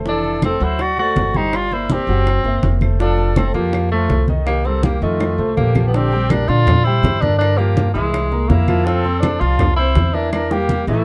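A breathy, vintage-toned tenor saxophone carries the melody up front with vibrato and a touch of plate reverb, while a bright, straight-toned concert flute adds a tongued, slightly unsteady second line in this lively, sophisticated Afro-Cuban jazz excerpt at 163 BPM in F major. Beneath them, a thumpy pizzicato upright bass with gut strings sits forward, and a clear, intimate grand piano with audible action noise and deep lows comps through chords such as Fmaj7, Bb69 and Caug7. In the background, compressed, saturated congas, round low-tuned bongos and woody claves drive the straight 4/4 groove, with fills at 5.2 and 10.3 seconds, all inside a dark production with light reverb.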